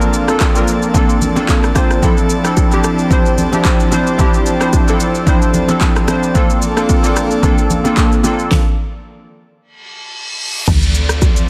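Amapiano with a late-night, soulful mood, where glassy, detuned digital keys with chorus and a punchy, overdriven deep house drum kit sit up front over an airy, breathy pad with sidechain pumping and soft bongos and congas in the background, until the keys drop out at 8.5 seconds, a reverse cymbal and downlifter sweep in at 9.8 seconds, and a woody log drum bass thumps in at 10.7 seconds under light reverb and a dense, heavily limited master.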